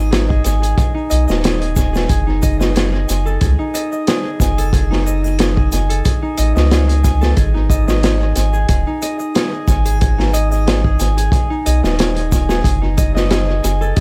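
Brooding, melancholic trip hop with a light swing, this passage from a longer piece alternates between G#5 and F#m chords. A mellow, ringing concert harp plays fingerpicked arpeggios through vintage 12-bit sampler grit and tape echo, over a deep, round dub sub bass that sits up front. From 0.1 seconds, a dark, saturated breakbeat kit with a punchy kick and rolled-off top drives the groove through tape echo, while an egg shaker, triangle and group handclap stay in the background, all set in an echo-heavy small-room mix.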